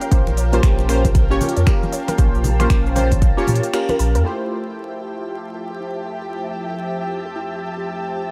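A swung 16th-note groove at 116 BPM in 4/4 drives this soulful deep house passage in F major, cut from a longer piece. A deep, layered electronic kick sits up front, joined by a drum kit of smooth hats, cabasa and finger snaps, with acoustic congas in a small room behind them and a round, mellow sine sub bass underneath. The kick stops at 3.3 s, a band accent lands just before the drums and bass fall away around 4.2 s, and the harmony moves from Bbm6 to Fmaj9 at 4.3 s. Throughout, detuned sawtooth analog keys play stabs with chorus, phaser and digital delay, while a warbling, lo-fi pluck plays arpeggios in the background. A silky vintage string machine holds sustained chords with phaser and ensemble chorus, shaded by a dark, intimate chamber violin section bowed sul tasto and a moody ambient pad with reverb. The keys, strings, pluck, violins, pad and sub bass all pump to the sidechain, and a vinyl crackle sits over the whole warm mix.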